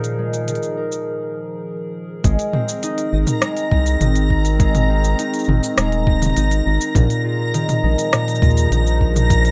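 A thumb-plucked concert harp rings up front with delayed arpeggios, filtered through a sweep over the opening 2.2 seconds, in this delicate, playful folktronica fragment in Ab major at 102 BPM, cut from a longer piece. A warbling, lo-fi tape-like pad holds sustained chords beneath, treated with chorus, phaser and reverb, while a crisp organic electronic kit of cabasa, hi-hat, rim click and toms keeps a straight 4/4 through a brief break from 1.1 seconds, before the round, deep analog bass and soft electronic kick arrive at 2.2 seconds. From 3.1 seconds a reversed, bright granular texture swells high above, as the chords move from Bb7sus4 to Abadd9 and back under light reverb.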